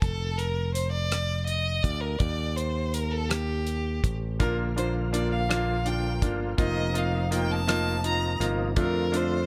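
A romantic, tender six-eight pop ballad in Bb major at a slow 55 BPM, this excerpt opens with a clear, focused bowed violin carrying the melody over a bright, growly fingered electric bass and a damped 70s drum kit whose dry, tight kick and rim click sit in a small room. At 4.4 seconds a polished concert grand piano joins with short-sustained accompaniment, while a gritty overdriven tonewheel organ with key click, chorus vibrato and a slow rotary speaker holds thick chords in the background. The harmony moves from Dm/F through Eb and Bb to an F7sus4 before returning to Dm/F.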